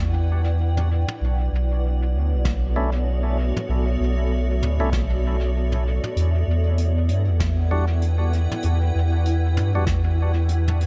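A 4/4 groove with a 59% swing on the sixteenths carries this deep, hazy stretch of ambient dub, cut from a longer piece. A round, soft sub bass sits up front from the first moment beneath a cloudy granular pad whose detuned unison voices and built-in reverb drift through Em9 and Bm11 before returning to Em9 at 6.2 seconds. A natural-sounding kit played with brushes, with a fat snare, hi-hat and toms, joins at 0.8 seconds and trails dub echo, while a tape-warm analog kick thuds in the background from 2.4 seconds. Short stabs from a lightly overdriven tonewheel organ, with key click and third-harmonic percussion, pass through a low-pass filter and dub echo. The production is dark and warm, with little reverb beyond the pad's own.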